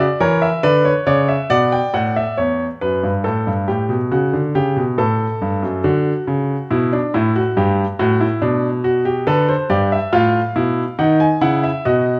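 A clear, natural grand piano sits up front and plays alone from start to finish in this baroque-style, three-part fugue cut from a longer classical piece. The mood is solemn yet driving, set in a steady, straight 4/4 with the instrument reaching from E2 up to G#5. An opening passage of about 2.4 seconds gives way to a longer second section that runs through to 12.2 seconds. The harmony begins on a rootless F# before settling on Bm, then moves through Em, A7, D, Gmaj7 and Bm7b5, arriving on B at 11.0 seconds. Close, detailed microphones capture the piano within a moderate recital hall reverb that adds space around each line.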